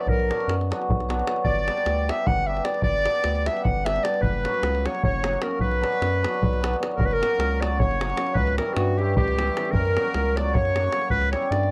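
A bright, classical-style solo clarinet leads from the first moment over a reedy, boxy accordion second line, shimmering hammered cimbalom, a round, up-front analog bass with a ring-modulated edge and a deep davul in a fiery, bittersweet Balkan wedding-band piece in a straight 7/8 at 305 BPM, moving from Bm through G and F# before a second section at 7.0 seconds alternates F# and C#dim, all captured in a dry, close 1970s-style studio sound.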